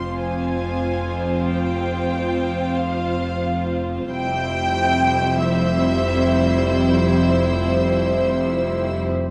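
In free time, this mysterious, eerie suspense-film cue drifts through a scoring-stage reverb, cut from a longer piece, with sul tasto strings throughout: a dark, woody, distant violin section carries the melody from C5 to C6 over an intimate, softly attacked second violin line, while a lush viola section sits in the background. Cellos and double basses hold a rich, floating bass on F, and a glassy, ethereal glass harmonica sustains chords in the background as the harmony moves from Fm to C/F at 4.1 seconds. At that moment a faint, pure high violin texture enters between E6 and G6, lasting until 8.9 seconds.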